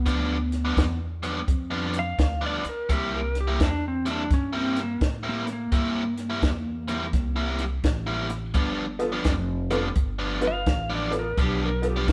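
Soulful and rollicking, this electric blues shuffle moves at 85 BPM in 4/4 with a swung feel, a cut from a longer piece where a clean, compressed lap steel guitar carries the slide melody and solo over G7 and C7 changes. A biting overdriven guitar riff and a compact cocktail drum kit with a punchy kick and high-tuned snare sit up front, while a woody, growly pizzicato upright bass anchors the low end. A jangly, detuned honky-tonk upright piano joins at 9.0 s, and the whole band sounds live in one room with a moderate stone-room reverb.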